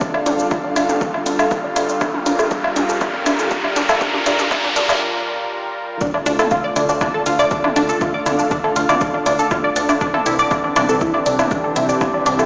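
Heard through a big system in a bare stone room, with a huge ambient reverb and a small-speaker tint, this dramatic, hypnotic melodic techno excerpt in D minor runs at 120 BPM in a straight 4/4, moving from Dm to Gm7 before settling on Dm and Cadd9. A tight, driving arpeggio synth with chorus, phaser and tape echo rides over a smooth detuned analog pad, an ethereal background pad, a very quiet evolving drone and a punchy, funky plucked bass entering at 0.3 seconds, all pumping to the sidechain except the drone. The opening six seconds build with a drum fill on the overdriven, up-front kit of hi-hat, shaker, toms and woodblock, a filter sweep and a riser from 0.6 to 5.0 seconds, pause for a brief break, then drop at 6.0 seconds, with the dry, overdriven kick pounding from the very start.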